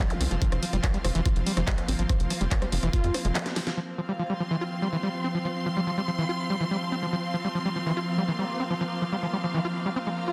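A dense, heavily limited modern master sits in a moderate digital room reverb, giving this driving, hypnotic psychedelic trance cut, taken from a longer piece, a compact, punchy sheen at 143 BPM in straight 4/4 over an F5 chord. Up front, a knocking electronic kick drives the opening until 3.0 seconds, alongside a layered kit of cracking snare, bright hats, handclaps and rim clicks that carries through a short break and drum fill before stopping at 3.8 seconds. A tight, sawtooth-and-square sequencer bass with a fast filter pluck anchors the low end until 3.3 seconds. Throughout, a squelchy, gritty acid bass riff, resonant and distorted with delay and a filter sweep, pumps against the beat. In the background, an overtone-sweeping drone of sustained chords shimmers with chorus and phaser, while a bowed studio string section adds smooth, vibrato-laden texture, both breathing with the same sidechain pumping.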